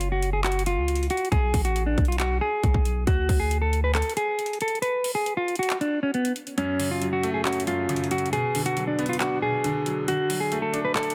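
A dark, eerie half-time trap excerpt opens with a mellow, clean fingered electric guitar melody washed in tape echo over a deep, sine-toned 808 bass that fades out by 4.0 seconds and an up-front electronic kit of hard-clipped kick, metallic hi-hats and handclaps, whose kick drops out at 4.8 seconds before a brilliant, short-sustained concert grand piano enters at 6.6 seconds with accompanying chords, all set in a digital ambience under a dense, heavily limited master.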